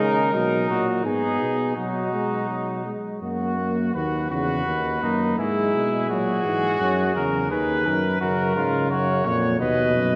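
A clear, up-front trumpet with light vibrato carries the second line beneath a mellow, punchy, distant trumpet melody in this serious, contemplative classical canzona for brass ensemble in B major, moving in a straight 3/4 at 85 BPM, while a dark, soft-attack trombone supplies accompaniment and a warm bass trombone anchors the bass, all four voices sounding together from the start in a roomy church reverb with a 3.2-second decay, as the passage turns toward its second section at 3.9 seconds in what is cut from a longer piece.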